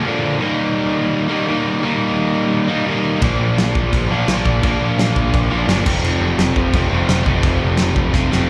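Rebellious and upbeat, this punk rock excerpt charges along at 171 BPM in a straight 4/4 in F mixolydian, heard as a live gig through the venue's PA with club reverb. A bright, double-tracked distorted electric guitar opens the riff alone with slapback echo up front, moving through Eb, Bb and F. At 3.2 seconds a growling, overdriven picked bass and a loose indie drum kit with a fat snare, punchy kick and dark cymbals join in, closing with a drum fill at 8.1 seconds.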